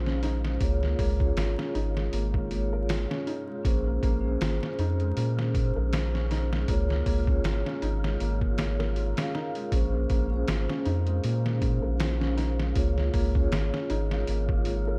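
A lightly swung trip hop groove from a muffled, pitched-down sampler-style kit, with thumpy kick, hi-hat and snare up front, carries this brooding, hypnotic passage as a round, deep analog bass with a filter sweep anchors the alternating Bbm7 and Db chords, a soft-mallet vibraphone rings with harmonic tremolo and tape echo, a felt-muted upright piano plays intimate arpeggios through its own tape echo, and an airy, breathy wind-like texture lingers in the background, all within a dark, dry production dusted with vinyl crackle.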